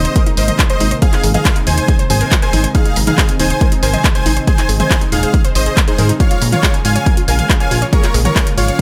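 This soaring, emotional uplifting trance excerpt at 139 BPM opens at once with a huge, detuned supersaw melody carrying dub echo, a lush, warbling unison pluck spinning arpeggios, a silky string pad holding chords in the background, a punchy, funky analog bass, and a layered techno kit of handclaps, hi-hat and toms, with a heavy kick landing up front at 0.2 seconds. The harmony rests on Abadd9 before moving to Bbm7 at 6.2 seconds, while sidechain pumping breathes through the supersaw, pad, pluck and bass. The mix is dry and loud, and the re-recorded drums carry a large-room character.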